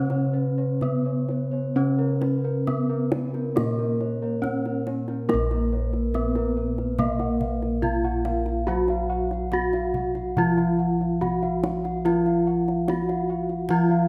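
This Javanese gamelan excerpt in Bb pelog moves at a stately, hypnotic 70 BPM in 4/4, with a gently uneven beat and slightly flat tuning. A bronze metallophone carries the melody up front, struck with a wooden mallet; its paired tuning gives a shimmering beat to every ringing tone. Beneath it, a second metallophone plays a dark, smooth accompaniment with a horn mallet. In the upper register, a set of bossed gongs played with padded beaters and a third metallophone struck with padded disc mallets add soft, mellow arpeggios, the gongs sitting close to the listener. A lower set of bossed gongs holds the bass with a round, vintage, band-limited tone, and the kendang adds tight, close, dry drumming from 0.1 s to 14.0 s. The recital hall gives the ensemble a moderate bloom of reverb, and the music moves into a new section at 5.3 s.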